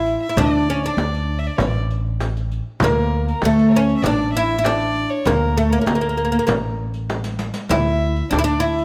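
A bright, woody fretless oud carries the melody up front in this longing, melancholic Arabic maqam ensemble excerpt, moving at 98 BPM in a straight 4/4. A single distant bowed violin floats a pure, soft-edged second line above it, while a thumpy pizzicato upright bass with gut strings sits close and dark below. A small frame drum and a background riq with dark jingles keep time with a vintage, band-limited tone, a drum fill arrives at 7.1 seconds, and the whole ensemble is heard through close, detailed microphones in a moderate recital hall reverb.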